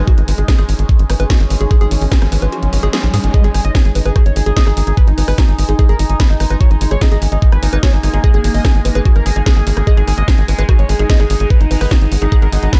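Psychedelic trance at 147 BPM with an intense, driving mood, this short cut from a longer piece rides a knocking, up-front electronic kick and a drum kit of hi-hat, rim click and cracking snare under a tight, punchy sawtooth sequencer bass, a woody, wave-folded pluck riff with chorus and digital delay in the background, a resonant overtone-sweeping drone on sustained chords with phaser, a cloudy, detuned granular pad, and a very quiet riser that runs through the kick's dropout at 2.5 seconds until a gritty, screaming overdriven lead with vibrato, phaser and delay enters at 3.3 seconds for the drop, all in a dark, dry production.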